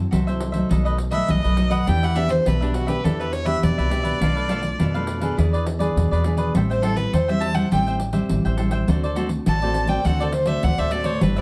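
Heard from further back in a wet studio room, this sunny, festive samba-and-choro excerpt at 103 BPM in straight 4/4 sets a clear, bowed solo violin with vibrato and plate reverb up front from 1.1 s, over a woody pizzicato upright bass, dark fingerpicked nylon-string guitar, crisp picked cavaquinho and jingly pandeiro struck with hard hands, moving through F#m7b5, B7 and Em7 on toward D7.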